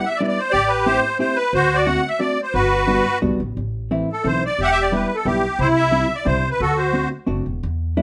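Whirling and nostalgic, this brief musette tune at 178 BPM in 3/4, cut from a longer piece, sets a reedy, shimmering musette accordion melody up front over a clean, compressed, fingered accompaniment from a dark electric hollow-body jazz guitar and a woody, thumpy pizzicato upright bass on gut strings that enters at 0.5 s, with the accordion dropping out at 7.1 s as the band, playing live together in one room, sits in a moderate studio reverb.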